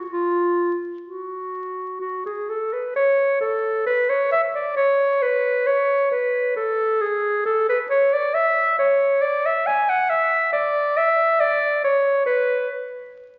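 Through the crackle of a very old 78 rpm record, a clear, close-miked solo clarinet enters at 0.1 s and sits up front in this radiant, flowing fragment of a baroque-style classical fantasia, moving in a rubato 3/4 at 68 BPM across a middle range, framed by a wet recital-hall reverb and the dull, muffled top end of the old disc, before falling silent at 12.7 s.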